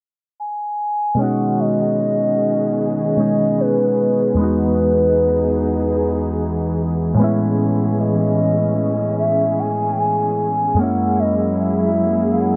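Heard through an echo-heavy, low-pass-filtered mix in a moderate echo chamber and small room, this dreamy, smooth R&B excerpt in B major moves at 75 BPM in 4/4. A mellow, gliding portamento lead with vibrato, chorus and tape echo carries the melody from 0.4 s, joined at 1.1 s by round, gentle electric-piano-like synth keys colored with chorus and phaser. At 1.2 s an intimate bowed string section adds sustained chords as a filter sweep begins and the harmony moves through B69, Emaj7, Amaj7 and F#9.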